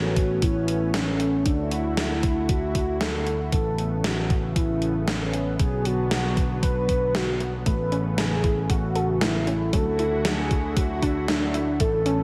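This excerpt of romantic, uplifting synthwave opens with a velvety synth lead carrying the melody in A major at 116 BPM, its smooth sawtooth tone coloured by chorus, vibrato and digital delay, over a lush, airy unison pad whose detuned sustained chords pump against the beat. A picked electric bass sits up front with a bright, growly, direct-and-amped edge. From 0.2 s a thumpy, tape-warm electronic kick drives a straight 4/4 pulse beside a sampler-style 80s drum machine, whose hi-hat and gated-reverb snare carry a slapback echo. At 7.7 s a punchy, warbling unison pluck joins in the background, spinning wave-folded arpeggios through digital delay. The chords move from Aadd9 to Dadd9 and Bm, and a lush hall reverb gives the whole mix a big arena sound.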